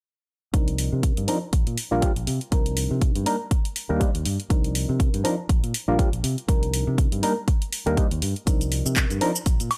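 A swung 121 BPM pulse from a punchy, up-front electronic kick drives this nostalgic, funky filtered disco house excerpt in C minor, where a house kit of warm hats, handclaps, shaker and woodblock pumps beneath a round, dark fingered electric bass and a reedy, clean electric piano with fast tremolo and phaser cycling through Cm11, Gm7/Bb and Ebmaj7, all in a dry room as a filter sweep runs from 0.5 to 9.8 seconds.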